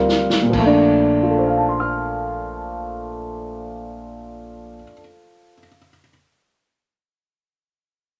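A short drum fill on an open jazz kit opens this relaxed, warm jazz piano trio fragment, cut from a longer piece, with a boomy kick, medium-tuned snare and dark crash cymbal sounding in a small room. The kit falls silent by 0.8 seconds, while a baby grand piano carries the melody, sitting up front with an intimate tone and audible action noise. Beneath it, a woody, pizzicato upright bass with steel strings holds the low end quietly until 4.8 seconds. The swung feel in 4/4 settles as the harmony moves from Fsus24 to Bbmaj7 at 0.5 seconds. A moderate small-room reverb lends the acoustic trio a natural, close sound, and the piano rings on alone to the end.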